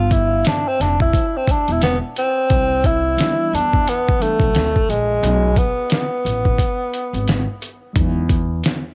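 A dusty cassette home recording with digital ambience frames this smooth, cool jazz-hop excerpt at 88 BPM in 4/4 with a swung sixteenth feel, cut from a longer piece. A breathy tenor saxophone sits up front with subtone, vibrato, scooped notes and tape echo, soloing over the opening break until 2.5 s. Beneath it, a woody, growly pizzicato upright bass and a gritty, overdriven sampler-style kit with a thumpy kick and fat snare carry the groove. After the opening Em7, a mellow tine electric piano joins in the background at 3.2 s across the chords Cmaj9, B13 and Emaj7.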